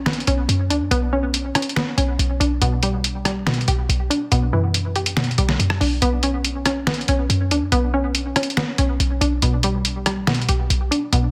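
A hollow, detuned square-wave pluck plays bright arpeggios with chorus and tape echo over a punchy, tight 808-style bass from the start of this melancholic, brooding trap excerpt at 141 BPM in a half-time feel, moving between Bmadd9 and Em7/B in B minor, while a muffled, pitched-down lo-fi sampler-style kit with finger snaps, hi-hat, rim click and a fat, tape-warm snare sits up front in a light reverb and a dense, heavily limited modern master.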